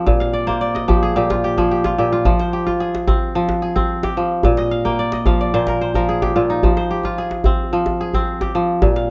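A straight 4/4 pulse at 110 BPM runs through this short cut from a longer piece of West African traditional music, set in F dorian with a hypnotic, reflective mood. The djembe enters at 0.1 s and keeps a tight, cracking beat with the feel of a small room. Up front, the acoustic kora plays fingerpicked arpeggios that ring out bright and crisp across a span from Bb2 to G5, adding fills around 0.2 s and again near 4.6 s. The harmony alternates between Bb5 and Fm, a cycle that deepens the trance-like quality. Close, detailed microphones and light reverb keep both instruments clear and present.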